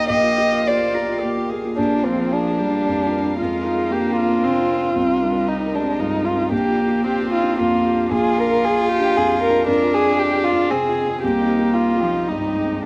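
Neoclassical piano and strings in C minor, melancholic and reflective, moving at a rubato 114 BPM in 3/4 through a short passage cut from a longer piece, cycling Gm7/Bb, Bb7, Fm and Cm7 twice. A dark, woody solo violin with vibrato carries the melody up front, while a floating, pure-toned cello plays a second line sul tasto, and a very quiet, airy-bowed viola and a felt-muted upright piano, mellow and intimate with audible action noise, provide the accompaniment. Behind them, a chamber string section holds sustained chords sul tasto in the background, with moderate plate reverb lending the ensemble a gentle sense of space.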